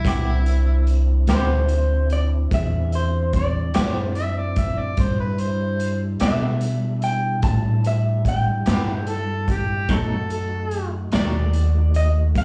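A slightly broken-up electric guitar through a small old amp sings the lead from 1.3 s over a smoky, mournful slow blues in 12/8 at 49 BPM, with a gritty overdriven harmonica on a second line with tongue slaps and scooped notes, a woody, thumpy upright bass and a saturated garage drum kit up front, twangy tremolo-laden clean guitar accompaniment, and sustained tonewheel organ chords turning through a slow rotary speaker, all set in the club reverb of a live gig as Cmaj7 gives way to B7 at 9.9 s in this excerpt.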